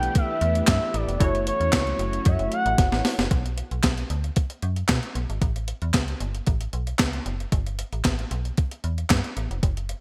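Bright, digital 1980s-style production in a lush hall sets this danceable, late-night early-eighties boogie funk excerpt at 114 BPM, where a smooth, gliding sawtooth lead with vibrato and portamento carries the melody, a punchy, detuned polysynth comp and a vintage string machine with phaser sit beneath it until 3.3 s, a drum fill arrives at 2.8 s, and from there the metallic FM bass and the crisp, overdriven 8-bit drum machine with its thumpy kick, handclaps and gated reverb carry on by themselves.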